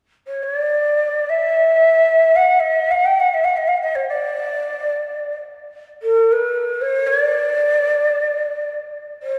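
This Arabic maqam ensemble recording, cut from a longer piece, unfolds in free time in D maqam huzam, tuned to A4 = 442 Hz. A single ney carries the performance as a solo voice, entering at 0.3 seconds and sounding through to 9.4 seconds. Its end-blown reed-cane tone is breathy, warm and soft in attack, with a vibrato and an unsteady quality that give the line a human, searching character. The ney sits up front yet carries a distant air, bathed in a wet church reverb whose long tail suggests a church or concert hall. The mood is passionate and stately, a brief, unhurried meditation suspended in a resonant space.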